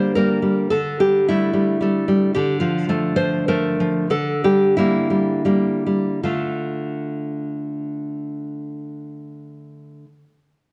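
This is a romantic piece for solo classical guitar, a short passage cut from a longer work, with a passionate yet wistful mood. A single nylon-string guitar carries everything from 0.0 to 10.1 seconds, fingerpicked and sitting up front with a full-bodied acoustic tone, and the occasional finger squeak comes through. The playing moves in a flexible, rubato triple metre, and the pace eases back between 1.5 and 6.3 seconds before a new section begins at 6.3 seconds. The harmony keeps returning to a low D beneath shifting chords. A moderate recital hall reverb surrounds the guitar, while the sound has the worn, warbling quality of old cassette tape, its pitch drifting in a way that deepens the wistful feel.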